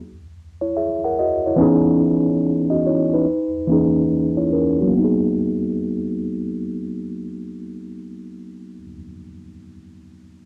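A slow, swung hip hop groove at 72 BPM in 4/4 sets a hazy, nostalgic mood in G# minor. A mellow tine electric piano, worn and slightly out of tune yet clean and up front, enters at 0.6 s with low-pass filtered chords moving through C#m7, Emaj9#11 and G#m7, a filter sweep shaping it until 4.9 s. Moderate studio reverb and the warbling pitch drift of old cassette tape give this short cut from a longer piece its faded, dreamy character.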